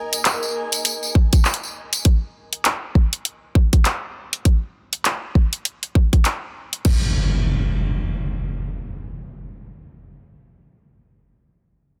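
A cloudy, detuned granular pad with sidechain pumping opens this gritty, swaggering glitch hop excerpt with a swung feel over a rootless Fm7, fading out by 2.0 seconds. From 0.1 seconds it is joined by a layered electronic kit of crash cymbal, handclaps and bright hats and by a jingly acoustic tambourine in a live room. A tight, up-front electronic kick drum lands at 1.2 seconds, and an electronic impact hits at 6.9 seconds, all within a dense, heavily limited master.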